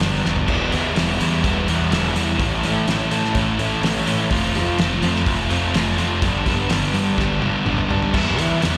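A straight 4/4 pulse at 125 BPM drives this restless, moody indie rock fragment, cut from a longer piece, with the cloth-damped, thuddy drum kit opening on a fill at 0.2 seconds and closing on another from 7.2 seconds. The kit has a fat snare, a tight kick and dark cymbals among its hi-hat, crash and toms, and its rolled-off top keeps it muffled in a small-room sound. Up front, a crunchy overdriven electric guitar picks a riff through a cycle of E minor, A, F and G before returning to E minor at 8.1 seconds. A thick fuzz guitar sits in the background, picking its own riff with a murky distorted tone colored by analog chorus. A growling fingered electric bass with overdrive anchors the low end, and the whole band comes across as a live gig heard through a venue's PA, wrapped in the reverb of a recital hall.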